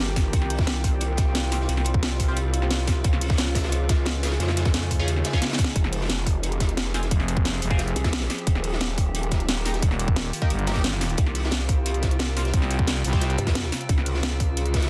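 A straight 4/4 groove at 177 BPM drives this dark, futuristic stretch of technical drum and bass in F minor, built on a tight, overdriven electronic kick and an up-front kit with a cracking snare and bright hats, while a gritty, rolled-off breakbeat kit crunches in the background and a drum fill lands at 5.4 seconds. An aggressive, wobbling growl bass sits up front, joined by a thick FM growl bass from 7.1 seconds, as a metallic, inharmonic drone with ring modulation holds sustained chords through a Csus4, Db, Fm and Eb progression. A nasal, band-passed sawtooth stab with phaser and dub echo flickers behind them, and a moody, warbling vintage pad glows beneath the opening until 5.8 seconds, all pressed into a dense, heavily limited modern master.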